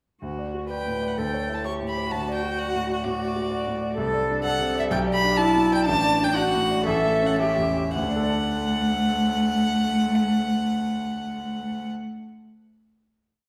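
Opening at 0.2 s, a dark, sul tasto cello counter-melody and a deep-bassed concert grand piano rocking through broken chords set up this spirited, graceful, quick classical-period piano trio piece in D major at 108-130 BPM, with an intimate, airy-bowed violin entering at 0.7 s to carry the melody with light vibrato, the rubato pace slowing from 3.0 s into a final D chord that rings in a wet stone room.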